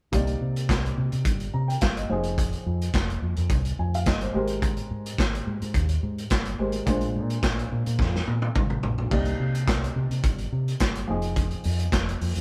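Disco in C minor at 107 BPM, this short cut from a longer piece has a sultry, danceable mood, with the full band playing together from start to finish as if live in one room. A vintage drum kit sits up front with a tight kick, medium-tuned snare, dark cymbals, handclaps, hi-hat, toms and crash, its sound saturated and gritty with a rolled-off top. Underneath, a fingered electric bass adds a round, punchy low end, spanning F1 to C3. A dark baby grand piano provides mellow, intimate accompaniment lower in the mix, its short sustain and audible action noise giving it a natural, close feel. The harmony moves through Cm9, Fm7, Abmaj9 and Bb9 before circling back, and a drum fill from 8.0 to 9.1 seconds leads into the return to Cm9. Moderate studio reverb wraps the group in a lived-in room ambience.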